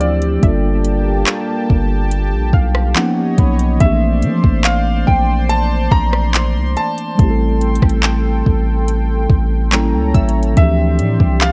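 A soft-kicked electronic R&B kit of handclaps, metallic hi-hat, kick and rim click sits up front at 71 BPM in a straight 4/4, with a deep, sine-toned 808-style bass whose long notes decay beneath it, setting a sensual, late-night mood in this contemporary R&B fragment. An intimate concert grand carries the melody with audible action noise and tape echo, while a mellow, clean tine electric piano accompanies and adds fills at 2.1 and 9.3 seconds. A slow-attack detuned analog pad with chorus holds the chords from Gm9 through Bbmaj9#11 and A7b9 to Dm11, a glassy, crystalline wavetable pluck with a filter sweep glints in the background from 0.4 seconds, and a barely audible downlifter passes early, all within a digital ambience.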